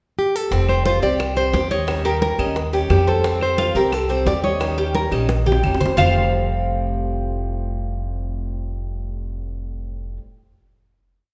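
A fingerpicked nylon-string guitar leads up front with a call-phrase motif over a relaxed Cuban son and guajira vamp, joined by a thumpy pizzicato upright bass playing tumbao, a metallic double-strung tres picking an arpeggiated guajeo, a boxy strummed archtop guitar with muted slaps and finger squeak, and background congas, bongos with hand bell and woody claves that drop out after a drum fill near 6.0 seconds, leaving the strings to ring out on a final chord in a church-like hall.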